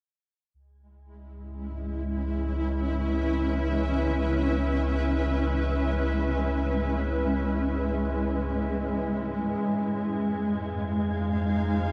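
This ambient excerpt drifts in free time, reflective and melancholic, tuned slightly below standard pitch to A4 = 435 Hz. A deep, round sine sub bass arrives first at 0.5 seconds, holding sustained low notes beneath everything that follows. At 1.6 seconds a granular cloud pad enters up front, its blurred, detuned sustained chords evolving slowly with a soft attack, long release and its own built-in reverb. Far in the background, having slipped in just before the pad at 1.4 seconds, an airy, breathy wind-like tuned noise texture hovers higher up, also carrying its own reverb. The harmony rests on C#m7 before shifting to Fm7 at 9.6 seconds, while a gradual fade-in on the synth texture runs through the passage. The whole mix sits in a huge, wet ambient space with a very long reverb tail.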